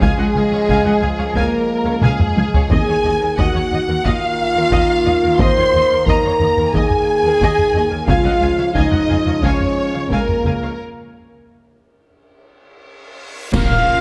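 Close, detailed microphones in a moderate concert hall give this dark, dramatic passage of epic orchestral film score a lush, enveloping sound. A distant violin section carries the melody with smooth vibrato, while a second, softer violin line and a warm, bowed viola section sit behind it. Mellow French horns hold sustained chords in the brass, with clear trombones in the background, and bowed cellos and double basses anchor the bass. Heavy-stick taiko drums pound close and dry throughout, with short fills, and a break at 10.8 seconds brings in a dark cymbal swell, clash cymbals and concert bass drum. A huge, bright reverse cymbal rises from 12.8 seconds. At 13.5 seconds, the whole band lands an accent: a clear trumpet stab, a very quiet timpani hit, a huge impact, and a full pipe organ chorus in the final moment, just before the piece is cut off.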